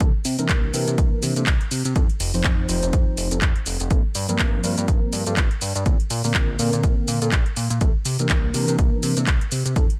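Filtered disco house with a nostalgic, funky mood, moving in a swung 4/4 groove across this brief excerpt. A punchy, up-front electronic kick anchors the track, joined by a layered house kit of handclaps, metallic hats and shaker that carries a tape-warm, small-room character, with pumping on the hats and percussion. A fat, detuned analog bass with tube saturation and a moving notch sits up front alongside a mellow, clean tine electric piano coloured by phaser, both pumping and low-pass filtered through chords such as C9 and Gm11, in a dry mix.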